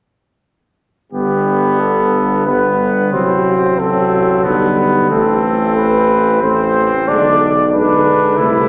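Classical brass quintet music in G major, this short excerpt from a longer piece moves at 91 BPM in a straight 3/4 with a warm, triumphant mood. All five players enter together at 1.1 seconds and hold through to 8.7 seconds. A mellow cornet carries the melody between G4 and D5, while an up-front, clear trumpet sings a second line below it. The French horn, also mellow, adds vibrato and sounds distant and roomy in its accompanying role, and the close-miked trombone gives the lower accompaniment a clear edge. Underneath, the tuba anchors the bass with light vibrato and a vintage tone. The whole ensemble sits in a wet concert hall reverb over a harmony that moves from G through F#dim/A and G/B to A minor before closing on G#dim/B.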